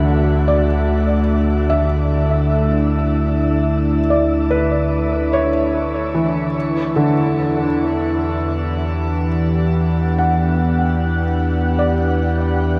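Peaceful and luminous, this 12.8-second ambient passage at 75 BPM in D major sets a mellow, morphing wavetable pad of detuned unison tones, carrying chorus and a filter sweep, over a dark, rumbling drone. A soft, felt-muted upright piano with audible action noise plays intimate arpeggios through diffuse delay, and everything is bathed in a wet shimmer reverb as the harmony moves from Dmaj9 to Em7 at 6.5 seconds.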